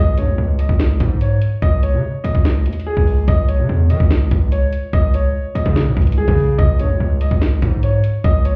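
Drill hip hop at 145 BPM in a half-time feel, this menacing, tense excerpt in C# minor sits on a C#sus2 chord and sounds as if heard muffled through a wall, with club reverb over the whole mix. A bright, woody upright piano carries the melody between G#4 and D#5, softened by a low-pass filter and tape echo, while a distorted, saturated 808-style bass with a fast attack and a noise layer sits heavy and up front. The electronic drill drum kit enters at 0.2 seconds with a knocking kick, sharp snare and metallic hats, all carrying a tape-warm character.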